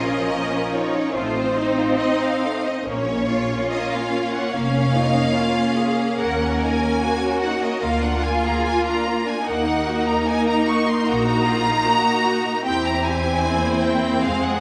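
This is a slow, romantic classical movement for string orchestra in Bb minor, solemn and elegiac, moving at about 73 BPM in 4/4 with a freely breathing rubato pulse. A lush, up-front first violin section carries the melody with rich vibrato, while a second violin section plays a smooth, warm second line beneath it. Violas fill in the accompaniment with a clear, bowed tone, and the cellos and double basses share the bass: the cellos sound focused, and the basses add expressive portamento. The harmony turns from Bb minor through F7/A toward Eb minor, Bb7/D and finally C7/E, and the full ensemble plays together across the whole 14.6 seconds of this passage cut from a longer piece. A generous scoring stage reverb with a 1.8-second decay wraps the strings in a spacious, wet hall sound.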